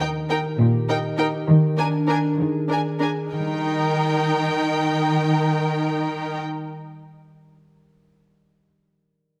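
A moderate scoring-stage reverb gives this short cut from a longer cinematic cue a roomy glow, as a playful, whimsical 6/8 passage in Eb major drifts along at 67 BPM with a magical, quirky air. A rich, close violin section carries the melody with expressive vibrato over a more distant, lush second violin line, smooth-topped violas and an up-front, focused cello section on the bass, while a thumb-plucked concert harp plays ringing arpeggios. The bowed strings stop at 6.4 seconds, leaving the harp alone until 7.2 seconds after a brief move from Eb to Bb7/Eb and back.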